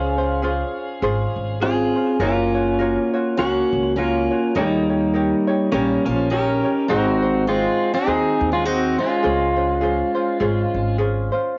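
A lazy 102 BPM swing in 4/4 carries this sunny, languid Hawaiian excerpt in Db major, moving through Dbmaj7, Gbmaj7, Eb7 and Ab7 before settling back on Dbmaj7 at 9.2 seconds. Up front, a clean, twangy electric pedal steel sings the melody with slide, volume swells and tape echo. Beneath it, a full-bodied jumbo acoustic guitar picks a second line with audible finger squeak, a light, bright ukulele fingerpicks the accompaniment until 11.6 seconds, and a woody, growly pizzicato upright bass anchors the low end, all in a homespun cassette recording with light reverb and a muffled top.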